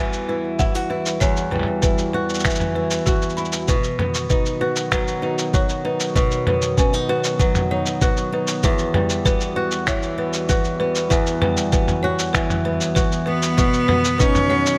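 A straight 97 BPM groove of muffled, pitched-down sampler-style kick, cabasa, finger snaps and toms drives this playful folktronica excerpt, where fingerpicked flamenco guitar arpeggios with digital delay, a woody hard-mallet marimba second line with tape echo, and a warbling, detuned pad with chorus move between Emadd9 and B under vinyl crackle and echo chamber reverb, until a biting, nasal bowed cello takes the melody at 13.3 seconds.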